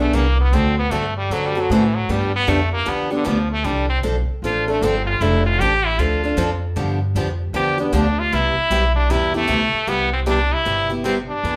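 A stopped French horn, nasal and metallic with a light classical vibrato, carries the melody as a solo through the first 9.9 seconds of this playful, charming excerpt of swinging acoustic jazz manouche at 154 BPM in C major, backed up front by a bright, boxy picked parlour steel-string guitar and a woody, thumpy pizzicato upright bass on gut strings, all played live together in a large studio room with moderate reverb.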